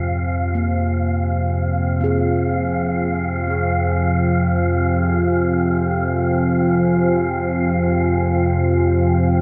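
Desolate and cavernous, this ambient passage drifts in free time, cut from a longer piece and bathed in a huge, wet reverb with a long eight-second tail. Up front, an analog drone built from detuned sawtooth and pulse waves holds the low register, mellow and evolving, with a moving notch and chorus shifting its colour. Above it, a deep, moody pad sustains a single minor chord with full-bodied, dark unison voices over a sub octave, softened by chorus and its own reverb. A breathy, wind-like tuned noise texture hangs high in pitch above them, airy and shadowed. In the background, soft bronze gamelan-type bossed gongs struck with padded beaters play round, beating arpeggios through a tape echo until they fall away at 7.9 seconds, leaving the drone, pad and wind to linger until 9.4 seconds.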